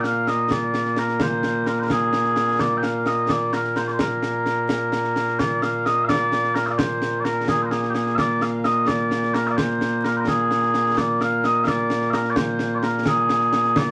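Ceremonial and stirring, this Scottish traditional pipe tune moves in a straight 6/8 at 86 BPM in Bb mixolydian, with mellow small bagpipes carrying the melody, sweet and continuous, up front from Bb2 to G5 across its 13.9 seconds. Beneath them a concert snare drum and concert bass drum sit lower in the mix, acoustic, close and dry, with dark cymbals. A moderate club reverb and a layer of vinyl crackle colour the sound, and the section heard, repeated from 5.4 seconds, is cut from a longer piece.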